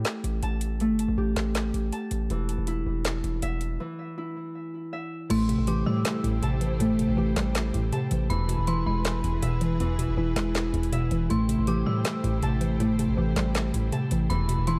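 A fingerpicked, ringing Celtic harp with tape echo sits up front, playing arpeggios over a punchy, heavy 808-style bass and a trap drum kit with a woody snare, metallic hats, handclaps and crash cymbal in this menacing, eerie half-time trap piece at 160 BPM in A minor. After a break at 3.8 s, three more parts join at 5.3 s over Am7 and E chords: a round, mellow mallet-like FM pluck with chorus, an inharmonic, detuned synth bell with chorus and tape echo, and a distant, bowed symphonic string section with light vibrato. The dark production carries light reverb.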